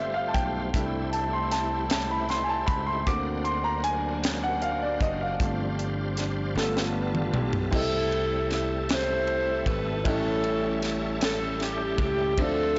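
A blown-out, overdriven recording in a small room with light reverb and a dulled top end carries this uplifting, hopeful slow gospel excerpt in 6/8 at 52 BPM in C major, where a polished baby grand piano takes a solo over a shouting tonewheel organ with fast rotary speaker and chorus vibrato, very quiet sul tasto strings, and a growly, foam-muted thumbed slap bass. A crisp fusion kit with a high-tuned snare and punchy kick sits up front, adding a drum fill as a mellow, tight saxophone section enters with the jazz-style melody at 6.6 s. The strings drop out at 7.7 s as the second section begins, with sus4, sixth, augmented and ninth chords colouring the harmony.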